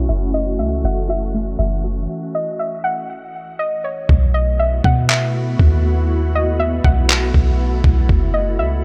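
A glassy FM pad with ensemble chorus and built-in reverb holds sustained, sidechain-pumped chords over a deep, soft 808-style bass, while a gentle round pluck traces chorused, tape-echoed arpeggios until 3.3 seconds, and a second, wave-folded pluck enters at 0.3 seconds with a soft melody. This melancholic, hazy cloud-rap piece moves at 120 BPM in a half-time 4/4 feel from F#m7 to B7sus4, bathed in a low-pass filtered digital ambience, with a filter sweep over the opening and a stop in the bars leading up to 4.1 seconds. At 4.1 seconds a gritty, pitched-down trip hop sampler kit arrives up front with thumpy kick and handclaps, and this fragment of a longer piece returns to F#m7 near its close.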